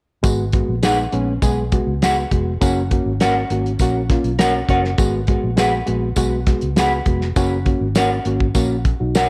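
A reedy electric piano sits up front in this uptempo 1960s-style soul excerpt, playing accompaniment chords bathed in spring reverb over a driving, passionate groove at 101 BPM in 4/4 with a straight feel. The harmony moves between G#m7 and F# in G# dorian, with the tuning set slightly low at A4 = 439 Hz. A cloth-damped, thuddy drum kit with a fat snare, tight kick, hi-hat and rolled-off top drives from the front of the mix, while a vintage muted fingered electric bass adds a dark, round, foam-muted low end. A jingly tambourine sits far back in the blend, and from 0.8 seconds an electric guitar through a small old amp cuts in with slightly broken-up, picked stabs carried by spring reverb and tape echo. The whole excerpt is wrapped in a moderate echo chamber reverb that gives it a vintage studio glow.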